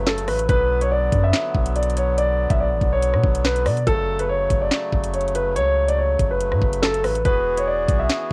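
A dark, mellow concert grand piano opens this ominous drill excerpt, carrying the melody through a low-pass filter and cassette-tape coloring, joined at once by a reedy, single-reed accordion holding sustained chords further back in the mix and a deep, sine-toned 808-style bass with a fast attack and long decay. At 0.1 seconds the electronic drill drum kit arrives up front, pairing a knocking kick and sharp snare with metallic hi-hats, rim clicks and handclaps, all given a tape-softened edge. The groove sits at 142 BPM in 4/4 with a half-time feel, in F# minor, moving from Bm to F#m and then to Eadd9 near 7.2 seconds. The home-recorded cassette character and digital ambience lend the short fragment a hazy, lo-fi menace, with the piano and bass sitting prominently over the accordion's clear, dry-tuned bed.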